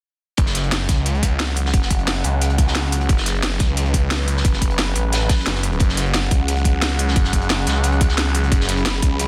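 From 0.4 seconds, this dark, mechanical slice of technical drum and bass opens with a snarling, distorted saw bass sitting up front, with the drums and pad entering at the same moment. Its aggressive, growling, detuned sawtooth tone is compressed and bright, with tube saturation and a moving notch in its low register. Driving it is a tight, tape-tinged electronic kick layered with a produced drum and bass kit of cracking snare and crisp hats. Further back sits a crunchy acoustic breakbeat kit with a gritty, saturated, medium-tuned snare, a rolled-off top and a high-pass filter on its hats, snare and room sound. Above them, a sweeping resonant pad holds sustained, warbling vintage chords, its slow-attack filter swell evolving through chorus and sidechain pumping. The kick drops out at 9.1 seconds and the other parts at 9.3, ending this dense, heavily limited excerpt cut from a longer piece.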